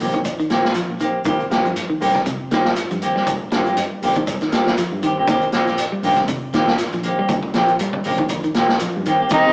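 Hollow-body electric guitar stabs sit up front in this driving, funky afrobeat excerpt at 119 BPM, swung lightly on the sixteenths and moving between Eb6 and Cm7. A punchy vintage drum kit with a rolled-off top, a round, foam-muted fingered bass in the background, twangy picked arpeggios from a bright clean electric guitar, distant ringing congas and a very quiet, grainy shekere fill out the groove, set in a rough rehearsal-room sound with stone-room reverb, saturation and a small-speaker tint. At 9.3 s a clear tenor saxophone with light vibrato and a brilliant trombone enter just as the clip ends.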